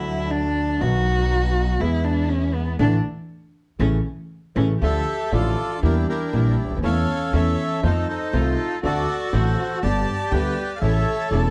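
A bowed cello opens this sultry, tense tango fragment, its single player taking the spotlight with vibrato, portamento and a soft, expressive attack, set over a woody, steel-strung pizzicato upright bass and a smooth, vintage concert grand piano with deep bass. The band lands a collective accent from 2.8 to 4.8 seconds. At 4.8 seconds a reedy, airy bandoneon arrives up front with the melody, and the harmony settles into D harmonic minor while the cello moves to a second line. Throughout, a dark, lush symphonic string section adds bowed stabs with a smooth top, sitting in the background. The tempo is 120 BPM in 4/4, played with a rubato feel, and the production is dark and warm, with light reverb.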